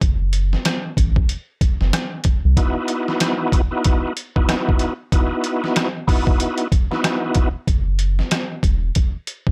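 A dark, gritty boom-bap hip-hop excerpt at 94 BPM in 4/4, with a loose 16th-note swing and a dry, close sound carrying little reverb. A sampler-style trip hop drum kit runs throughout, compressed, pitched down and muffled, with a thumpy kick, a medium-tuned snare, rim clicks and hi-hat, all overdriven and re-recorded in a small room so it sits up front. A deep, round dub sub bass anchors the opening break over F#m until 2.6 seconds, then returns at 7.7 seconds when the harmony moves to F#7(no3). Between those points a thick, overdriven tonewheel organ takes over on Badd11, its percussive tone colored by chorus vibrato, a fast rotary speaker, cassette tape wear and filtering. A very quiet, human finger snap sits close and soft from 0.7 to 7.2 seconds.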